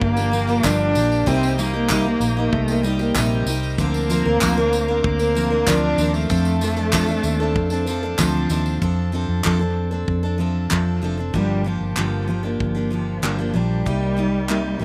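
A straight 4/4 pulse at 95 BPM from a studio drum kit with a punchy kick, handclaps and tambourine anchors this wistful, tender acoustic pop passage, cut from a longer piece, with a round, foam-muted electric bass up front. A full-bodied jumbo steel-string guitar is picked up front under a distant, woody bowed cello melody played with vibrato, both touched with slapback echo, over chords moving from Gm7 to Cm7, Bbadd9/D and F6. A reedy tonewheel organ turning through a slow rotary speaker and a jingly, saturated tambourine sit in the background until 8.8 seconds, all in a dry, open-air sound.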